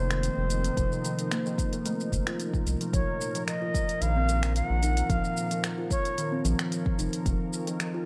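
A straight 4/4 pulse at 111 BPM drives this mystical, warm organic downtempo piece, with a drum kit of finger snaps, smooth hi-hats and shaker entering at 0.1 seconds and an electronic kick drum of deep, produced weight joining at 0.8 seconds. Beneath them, a round analog bass built from square and sine tones sits up front, dark and sustained, with sidechain pumping. A detuned sawtooth pad holds soft-attack chords treated with chorus, tremolo and sidechain pumping, moving from F7sus4 to B-flat minor at 2.9 seconds. Kalimba arpeggios ring out with a woody, hollow, thumb-plucked tone and tape echo. A bamboo bansuri carries the melody with an airy, reedy, close-miked sound and digital delay until 6.4 seconds, while light reverb and digital ambience frame this passage cut from a longer piece.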